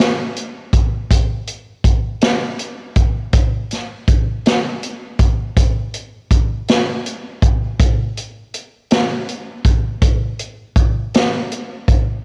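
Gospel in 6/8 at a slow 54 BPM, this reverent, uplifting excerpt features only a swinging big-band drum kit of hi-hat, kick and snare, playing from the start to about 12.1 seconds. The kit sounds acoustic and roomy, with a medium-tuned snare, a boomy kick and a rolled-off top, sitting up front yet with a distant quality colored by cassette tape. Light reverb and the feel of a home recording on cassette shape the warm sound of the piece.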